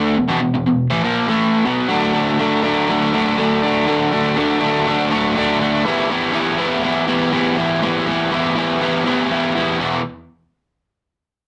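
In a straight 4/4 feel, this gritty, swaggering rock excerpt features a lone overdriven electric guitar from 0.0 to 10.0 s, dark, picked, double-tracked, compressed and up front, moving from E5 through D and Em and back to E5, heard in a rough rehearsal-room recording with tube saturation and a moderate small-room reverb.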